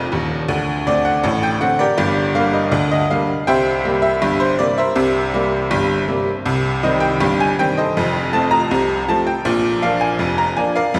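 Ragtime piano at 80 BPM in 2/4 with a straight feel, jaunty and lively, heard in this short passage lifted from a longer piece. A solo tack piano plays throughout, its metallic, jangly attack sitting up front with a vintage bite, spanning Eb1 to Bb5 through chords moving from Gm and C7 to Cm, F and a close on Bb at 9.4 seconds. The piano rings out into the long, wet reverb of a church or concert hall, lingering around 3.7 seconds.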